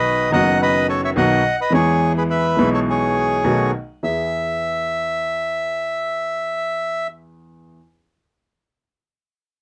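This tango moves at 106 BPM in 4/4 with a loose, rubato feel, set in E major and carrying a nostalgic, playful mood; it is a short excerpt cut from a longer piece. The bandoneon sings the melody between G#4 and F#5, its reedy, bright and airy tone sitting up front. Beneath it, a warm baby grand piano supplies the accompaniment from deep in the bass at F#1 up to G#4, also placed close to the listener. The harmony moves from B to E, then to B7 before settling back on E at 4.0 seconds, where the second section begins. The bandoneon drops out at 7.1 seconds, leaving the piano to ring on until 7.8 seconds, all captured in a dry, close 1970s-style studio sound touched by light reverb.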